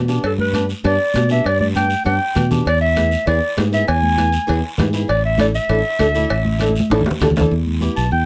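A dark, vintage-toned clarinet carries the melody up front, singing with vibrato in a jazz-style solo from 0.3 seconds, over a fiery, danceable cumbia at a brisk 198 BPM in straight 4/4. A growly, bright fingered electric bass sits directly up front, grounding the harmony as it moves from G to E and on to Asus4 before settling on Em. Beneath it, a boxy, fingerpicked nylon-string guitar adds a small, intimate accompaniment. The percussion bed blends a raspy guiro, ringing metal-shell cowbell and timbales heard close and dry, and high-tuned congas played with soft hands in the background. A drum fill arrives at 6.6 seconds, and the cowbell and timbales drop out at 7.4 seconds. Close, detailed microphones and light reverb give this short cut from a longer piece a crisp, present sound.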